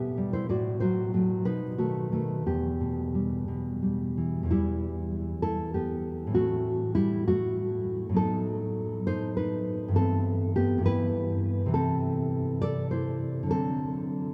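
Romantic solo classical guitar in a rubato 6/8, warm and sunny in mood, the nylon-string guitar sits up front with a dark, full-bodied, thumb-plucked tone spanning E2 to E5, bathed in a cathedral reverb that lets each chord hang in the air through a brief cut from a longer piece, where a short opening passage gives way to a new section at 4.5 seconds.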